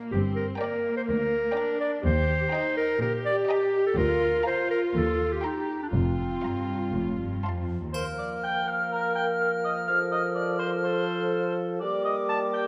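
A playful, whimsical cinematic cue in Bb major at 124 BPM opens with an up-front chamber viola section, soon joined by a solo clarinet, a rich cello section, a focused double bass section and two vibrato-laden violin sections set in the background. At 7.9 s the strings give way to a mellow, distant cor anglais, a pure silver flute, a bassoon, a French horn section holding sustained chords and a brief triangle, all bathed in a wet scoring-stage reverb with a mischievous, magical air.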